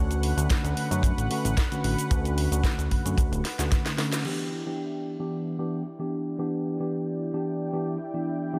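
A mellow tine electric piano sits up front in this short nu-disco cut, its clean tone bathed in lush chorus and dub echo, pumping with sidechain and passing through a low-pass filter. Beneath it, a unison pad holds sustained chords with a slow attack and long release, thick with detuned sawtooth and square waves, also chorused and pumping. The mood is sleek and cosmic, at 112 BPM in 4/4 with a light swing on the sixteenths, in E dorian over Dmaj7 and then Em7. A fat, nasal analog bass with a saturated filter pluck and a tight, dry kick drive the opening alongside a layered electronic house kit with a cracking snare, hi-hat, shaker and crash. A drum fill runs up to the section change with a band accent near its end, and the bass stops at 3.7 seconds. From 4.2 seconds the piano and pad carry on under a light reverb as a filter sweep shapes the electric piano, with the kit stopping soon after.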